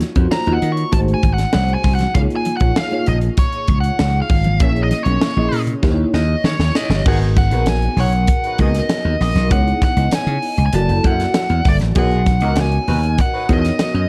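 Dry and dark, this polished 1980s jazz-funk pop excerpt has a slick, nocturnal mood, moving at 98 BPM in a straight 4/4 in G# minor. A tight acoustic funk kit with a high-tuned snare, tight kick, hi-hat and crash sits mid-forward in a small room, while a bright, punchy slap bass is up front and the loudest part. Very quiet congas with thin, damped skins add a vintage, band-limited tap beneath, and a bell-like FM electric piano with chorus supplies sparkling chords with a fast attack and a natural decay. Over this, a nasal overdriven lead guitar with a parked wah plays a picked solo in its upper range through the first section, capped by a drum fill from 5.8 seconds. At 7.1 seconds a distant, roomy horn section enters far in the background as a second line, while the harmony moves through rich extended chords from D#m9 and G#7b9 to a closing Bmaj9.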